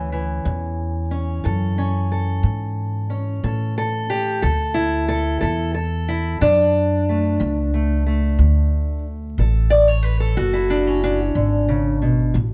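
Laid-back yet rollicking, this acoustic country blues moves at an easy 60 BPM in a straight 12/8, felt in dotted-quarter beats. A fingerpicked steel-string parlour guitar carries the melody up front, its old strings giving a dark, boxy, woody tone that ranges from A2 up to D5. Beneath it, a pizzicato upright bass with steel strings sits equally close, thumpy and warm, holding the low end between F#1 and A2. Both instruments play together for the full 12.5 seconds, starting on an A chord and shifting to D at 4.4 seconds. A light reverb and a vinyl crackle give the recording an aged, homespun character, and the passage is cut from a longer piece.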